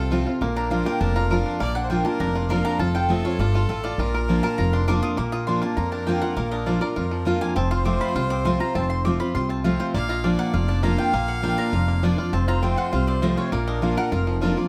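Driving and joyful, this bluegrass excerpt features a mellow, woody mandolin soloing in stabs from 0.6 seconds, over a fresh-stringed acoustic guitar up front, a twangy banjo played with fingerpicks on arpeggios, a growly, thumpy upright bass, and a clear, biting fiddle with light vibrato on a second line, captured with close, detailed microphones and light reverb.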